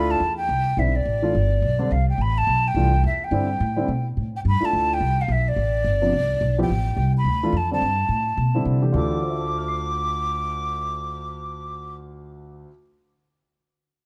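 Set in a light reverb, this fast, intense yet cool jazz fragment in D dorian swings at 213 BPM in 4/4, cut from a longer piece. A breathy, hollow metal flute carries the melody with a soft-attacked straight tone that sits somewhat distant, while a warm grand piano accompanies over a D9sus4 harmony and a woody, dark pizzicato upright bass holds down the low end. The harmony moves to Dm at 8.9 seconds, and the flute drops out at 11.9 seconds as bass and piano play on briefly.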